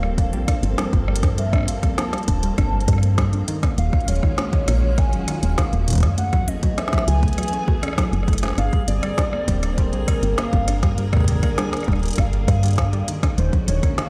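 A straight 4/4 groove runs through this glitchy, melancholic IDM excerpt, driven by a deep, overdriven electronic kick and an organic electronic kit of woody snare, rim click and smooth hi-hats that sits in a large studio reverb. Beneath it, an up-front FM bass gives round, dark notes with a fast attack and decay, warmed by tube saturation, and it drops out at 13.8 seconds just before the close. A soft string machine holds silky, vintage chords through an ensemble chorus, while a lo-fi, detuned pluck weaves mellow arpeggios coloured by a noise layer, filter sweeps, chorus and tape echo. On top, a warbling, nostalgic lead with vibrato sings a wave-folded melody through analog chorus, cassette-tape wear and delay. Far in the background, a reversed, granular texture swells dreamily with a bright, pumping shimmer over a moody run of minor eleventh and minor seventh chords.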